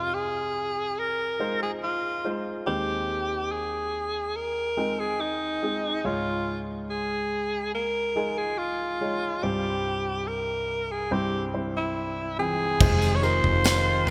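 An emotional, melancholic pop ballad in F minor at 71 BPM opens with a growling alto saxophone carrying the melody up front, its raspy, gritty tone marked by vibrato, scooped notes and a smooth top in a jazz-style solo. Beneath it, a warm grand piano supplies the accompaniment across a broad range, moving through Fm7, Ab/Eb, Dbadd9 and Csus4 before resolving to C. At 12.8 seconds the band arrives on a return to Fm7: a modern studio drum kit with a punchy kick, high-tuned snare, toms and crash cymbal, treated with gated reverb, alongside a dark, round, foam-muted fingered electric bass holding a low F. A sweeping detuned sawtooth pad with chorus, soft attack and long release enters at the same moment, and a jingly tambourine sits distant in the background from 13.0 seconds. The whole is bathed in a lush hall reverb with a bright 1980s-style digital sheen, and the excerpt is cut from a longer piece just as this fuller section begins.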